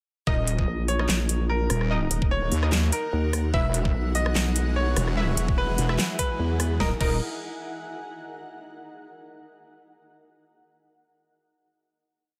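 Two saturated wobble basses dominate this heavy, aggressive wobble dubstep piece: one detuned and square-edged, the other nasal and dark with a resonant formant sweep, trading modulated phrases with shifting wobble speeds. Beneath them, a tape-toned knocking kick and a layered dubstep kit with a huge snare, metallic hats, claps, rim clicks and crashes drive a swung half-time beat through the whole drop, with the full band hitting an accent at 6.6 seconds. A brilliant, polished grand piano repeats a riff melody through a digital delay, while punchy orchestra-hit-style stabs echo sparsely in the background. A cloudy granular pad drifts in at 1.9 seconds with slowly shifting chords and sidechain pumping, and lush supersaw chords join at 3.5 seconds as the harmony moves from Ebm to Eadd9. The pad carries on alone into the closing Ebm chord, set in a light digital ambience.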